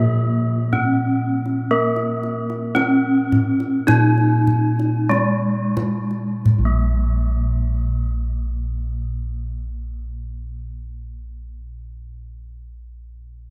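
A bright, ringing bronze metallophone carries the melody up front over round, dark bossed gongs, opening this serene, shimmering passage of Javanese gamelan in Bb slendro, cut from a longer piece. The metallophone's paired tuning gives it airy, beating tones and a slapback echo, while the smooth gongs hold the bass and a tight, acoustic kendang plays from 0.7 to 7.1 seconds. The tempo sits between 42 and 68 BPM in a straight 4/4 and slows through the first 6.5 seconds, with the ensemble placed in a vast, echoing space with cathedral-like reverb.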